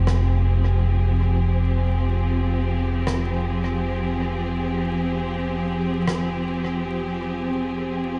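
A clear, lush symphonic string section sustains an F minor chord with vibrato, set over a fingered electric bass holding a low F through an envelope filter and tube saturation. From 0.1 s to 6.2 s, a rim click sounds in a big room, trailing dub echo. This deep, spacious ambient dub piece floats in free time, its echo-heavy mix softened by vinyl crackle and a dark, rolled-off top end in a brief 8.2-second cut from a longer work.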